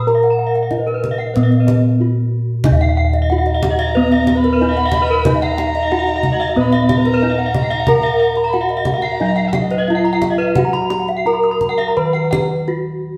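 Mellow, padded bossed gongs sit up front and anchor the bass of this brilliant, shimmering Balinese gamelan passage in 4/4 with an uneven beat, cut from a longer piece. A dry, close-miked bronze metallophone carries the melody with wooden mallets while two more metallophones ring out arpeggios, one full and the other bright and airy under horn mallets, their paired tuning producing shimmering beats, as a tight, hard-handed kendang drives the percussion. An intimate, boxy erhu adds a bowed second line with vibrato and portamento from 3.5 to 10.7 seconds, and the ensemble, playing live in a stone room with a wet reverb, drops into a break at 12.3 seconds.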